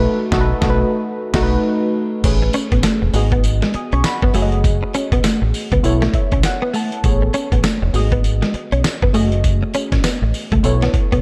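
A dark, lightly reverberant mix opens this slick, punchy R&B and new jack swing excerpt with a band accent and break over a B7 chord, as a gritty, compressed sampler-style drum kit arrives up front with a thumpy kick, medium-tuned snare, hi-hat, tambourine and crash. A deep, round fingered electric bass sits under mellow sawtooth analog keys with chorus and a filter sweep, and from 2.4 seconds a clean, scooped direct-recorded electric guitar with ensemble chorus plays a picked riff over a swung progression of Amaj9, G#m7, F#m69 and B9sus4. The keys add a fill at 5.8 seconds.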